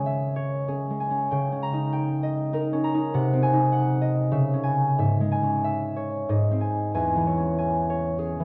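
Bathed in a wet recital-hall reverb, a ringing, thumb-plucked concert harp sits up front and plays alone in this wistful, gentle classical fragment in C# minor, moving in a rubato 3/4 at roughly 90-102 BPM and spanning E2 to A#5 as its harmony drifts from C#m through D#7/C# and G#7/B# before settling toward G# and C#m/E near 6.9 seconds.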